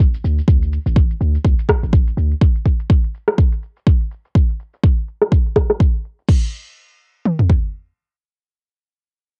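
Afro house at 124 BPM in 4/4, with a 16th-note swing of 57%, this short cut from a longer piece carries a spiritual, hypnotic mood. A deep, boomy, warm 808-style bass with a sine body, a noise layer, a fast attack and a decaying tail sits up front under sidechain pumping, moving between A1 and D2 until 2.3 seconds. One electronic drum layer brings crash cymbal, rim click and shaker, overdriven and tape-saturated, with low-pass filtering on the percussion, snare and cymbals and a filter sweep running until 6.3 seconds. A second, louder drum layer enters at 0.5 seconds with a deep, overdriven kick and toms, pushed up front and continuing to 7.6 seconds. The dry, cassette-recorded sound has a homemade character, and the music moves from its opening section into a new one at 6.3 seconds.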